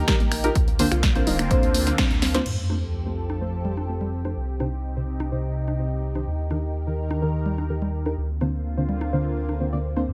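A straight 4/4 pulse at 126 BPM drives this hopeful, euphoric progressive house passage in Bb major, with a punchy electronic kick and a house kit of punchy snare, hi-hat, finger snaps and crash that fall away after an accent at 2.0 seconds and a drum fill at 2.2 seconds. Congas sit in the background and a round, deep analog bass sits up front, both pumping under sidechain throughout. A lush, detuned unison pad with chorus and phaser holds bright sustained chords, and a dark, decaying chord stab with delay takes on a filter sweep from 2.5 seconds, when a sub drop and impact land; a soft, gentle pluck plays arpeggios only at the opening, over chords moving from Eb through Bbadd9, Fadd9 and Cm back to Eb and Bbadd9/D in light reverb.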